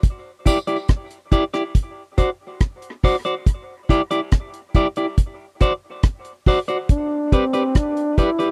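A straight, unhurried dub reggae groove in four sits under this short excerpt, carried by a deep, dry drum kit whose tight kick, hi-hat and rim click sit up front with a dark, smooth tone. From 0.5 s a clean electric guitar adds picked accompaniment, its tone warm and trailed by dub echo, while a tambourine in the background gives a single brief touch, its echo hanging in a live room. The harmony rocks between Em7 and D7 before settling on Cmaj7sus2. At 6.9 s a mellow trombone steps forward as a solo voice, punchy yet smooth at the top, with vibrato and its own dub echo. The close, 1970s-style sound has little reverb, leaving a spacious, heavy mood.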